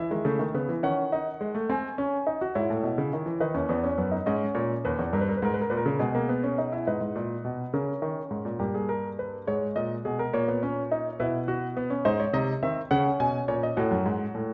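A clear grand piano sits up front, playing a baroque-style three-part fugue alone in C# minor, with the action noise of the instrument audible beneath the notes. The mood is lively and elegant, moving at 70 BPM in a straight 6/8 and tuned to A4 = 444 Hz, across a range from D#2 to G#5. The opening passage winds through dark minor and diminished harmonies, and a second section arrives at 6.9 seconds, shifting toward G# minor colours before settling onto F# minor near 13.8 seconds. The piano's tone feels natural and intimate, set within a wet recital hall reverb that lends a gentle sense of space. The recording is cut from a longer piece and runs to 14.5 seconds.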